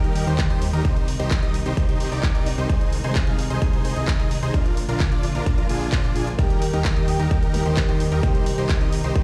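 Anthemic and uplifting, this festival progressive house clip is cut from a longer track and rides a straight pulse. A huge, detuned supersaw riff carries the hook, its thick unison sawtooth tone compressed and touched with vibrato and tape echo, while a fat, saturated analog bass with a filter pluck anchors the low end. Beneath them, a dark chamber string section holds soft, bowed chords in the background, and the strings, supersaw, bass and piano all pump against the sidechain. A tape-warm house kit of handclaps and hi-hat, re-recorded in a small room, plays from the start, and the punchy electronic kick joins up front at 0.4 seconds. At 6.4 seconds a mellow, vintage baby grand piano enters with long-sustaining accompaniment. The mix sounds like it is played on a big sound system in a bare stone room, with little reverb otherwise.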